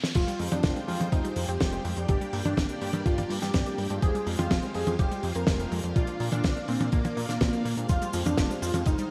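A dry, up-front fill on a damped 70s drum kit opens this short italo disco cut, with a fat snare, toms and dark cymbals. At 0.2 seconds most of the band arrives at a danceable 124 BPM in a straight 4/4: a thumpy, sampler-style electronic kick with overdrive and a large-room sound anchors the beat, and the kit adds hi-hat, cabasa and crash under gated reverb. A thick, detuned sawtooth analog bass holds down the low end with filter sweeps. A bold unison lead carries the melody, softened with vibrato, lush chorus and delay. Behind it, a vintage string machine ensemble sustains the chords, an analog pluck plays very quiet, round arpeggios, and mellow synth brass stabs, entering at 0.4 seconds, sit in the background with a cassette-tape tint. In F dorian, the harmony cycles between Fmadd9, Gm and Bb, giving the bright, 1980s-style digital production, flecked with vinyl crackle, a nostalgic glow.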